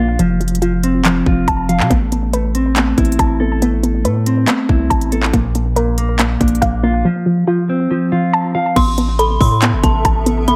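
Trap-leaning hip hop at 140 BPM in a half-time feel, eerie and dark in A minor, this excerpt moves through F, Amadd9 and Bb over a deep, long 808-style bass and an up-front electronic trap kit with a hard-clipped kick, crisp hats, handclaps and crash cymbal. A clean, fingered electric guitar, compressed and up front, carries the accompaniment until 8.8 seconds while a soft, round pluck with chorus and tape echo spins arpeggios throughout. At 8.8 seconds an inharmonic, warbling FM synth bell takes a second line, and from 9.3 seconds a faint, cloudy granular pad drifts in with its own reverb, all set in light digital ambience.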